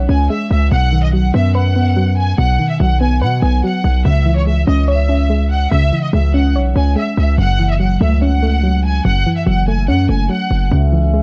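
A dark studio production wrapped in reverb frames this menacing, eerie hip hop excerpt, cut from a longer piece and moving with a half-time feel. A punchy 808-style bass sits up front, its heavy sine tone layered with noise and decaying after each fast attack. A soft, round pluck supplies accompaniment throughout, a detuned blend of triangle, sine and sawtooth waves with a noise layer, shaded by chorus and a low-pass filter. From 0.1 seconds a clear, focused violin section carries the melody, bowed with vibrato and passed through a low-pass filter and digital delay. The harmony shifts among a handful of chords, and at 10.7 seconds a mellow, close-miked brass ensemble enters with sustained chords carrying light vibrato.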